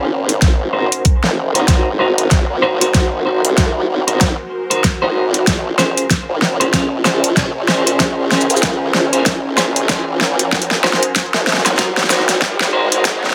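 Gritty and funky, this glitch hop excerpt rides a swung sixteenth-note groove in 4/4 and sits inside one long build-up, with a drum fill and a filter sweep running through its whole length. Up front, a dubstep kit of hi-hat, shaker and a huge, distorted snare enters at 0.3 seconds, and an overdriven electronic kick with a knocking punch follows at 0.4 seconds. A detuned formant-sweep wobble bass, compressed and thickened with chorus and tube saturation, pulses low beneath the beat. An electric guitar at the edge of break-up plays picked, slightly broken-up stabs through tremolo, sidechain pumping, a low-pass filter and dub echo. An ethereal, mellow pad with slow attack and long release floats in the background, shimmering with ensemble chorus and its own reverb while it pumps with sidechain compression. The harmony moves from Ab9 to Bbm9 and back, and a very quiet riser creeps in at 7.0 seconds, all within a light reverb.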